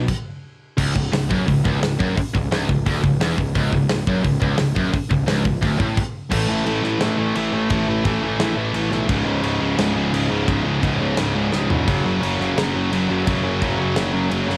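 A bright, high-gain guitar riff leads this relentless, epic heavy metal cut at 173 BPM in 4/4, joined by a sludgy overdriven guitar, a tight double-tracked distorted guitar entering at 0.8 seconds, and a growly fuzz bass sitting in the background beneath an up-front acoustic drum kit with a medium-tuned snare and tight kick. After brief stops, the band drops into a half-time feel at 6.3 seconds, moving through power chords on A, C# and F#, with a quick drum fill at 11.5 seconds. The dry home cassette recording lends the guitars and drums a gritty tape character.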